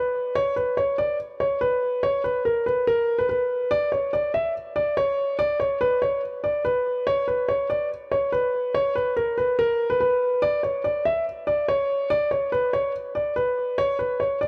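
A half-time feel at 143 BPM in 4/4 gives this cold, tense hip hop piece in B harmonic minor a slow gait. A lone grand piano plays throughout, from 0.0 to 14.5 seconds, staying in a narrow upper-middle range between A#4 and E5, with a dark, mellow, vintage tone; it sits up front and intimate, with its action noise clearly audible. A moderate plate reverb with a 3.1-second tail adds space to the smooth playing, and the music shifts to a new section at 10.4 seconds before this cut from a longer piece ends.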